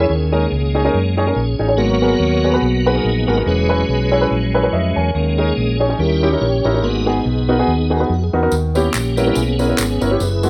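Fervent and soulful, this short cut from a longer uptempo gospel piece rides a swung feel as the tonewheel organ takes the solo from the first second, its piping, scooped tone lightly overdriven and spun through a fast rotary speaker with chorus vibrato and audible key click. Beneath it, a woody upright piano plays accompaniment and slips in a brief fill at 4.5 seconds. A dark, round, hollow-body electric bass, fingered and amped, holds down the low end up front. The harmony leans on suspended and altered dominant chords moving through minor sevenths and ninths, building tension toward a final altered chord. At 8.5 seconds, tambourine and group handclaps with an egg shaker join close in the mix, adding a live church lift under light reverb and studio ambience.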